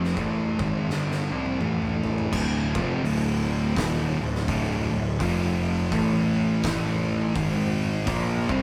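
From the first beat, two dark fuzz guitars, one up front and one in the background, play a sludgy, brooding stoner and doom metal riff with a swung feel over a growly fuzz bass and an oversized low-tuned drum kit with a punchy kick and fat snare, which plays a fill from 0.9 to 2.3 seconds, before a bright, double-tracked overdriven electric guitar enters in the background at 8.1 seconds, all heard as a rough rehearsal-room recording with light reverb.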